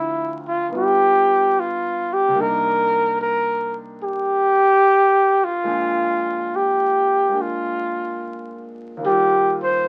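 A mellow trumpet sits close and up front, carrying the melody with a light vibrato across the full 9.9 seconds of this short cut from a longer jazz ballad. Beneath it, a concert grand piano supplies the accompaniment at a much lower level, its tone warm and natural with a deep bass reaching down to the low register. The tempo is an unhurried 72 BPM in 4/4, with a gentle swing on the eighth notes that gives the late-night, romantic mood an easy sway. The harmony moves through Dm9, G7b13, Cm9 and Bb7 before settling on Eb69 at 9.0 seconds. The sound carries moderate studio ambience and the dusty character of a very old 78 rpm record, complete with vinyl crackle and a muffled top end.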